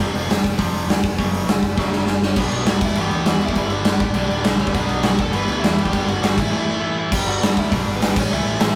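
A straight, driving punk rock pulse in 4/4 comes from a big, up-front acoustic drum kit with a punchy kick, medium-tuned snare, hi-hat and crash ringing in a bright stone room, joined by a growly, amped picked electric bass and a double-tracked, crunchy overdriven guitar riff. During a drum fill, a dark, smooth overdriven lead guitar takes the melody from 2.2 seconds, riding a rowdy, energetic chord progression through a break at 6.5 seconds into a final stretch. The cut from a longer piece has the rough feel of a rehearsal-room recording, with light reverb and warm saturation.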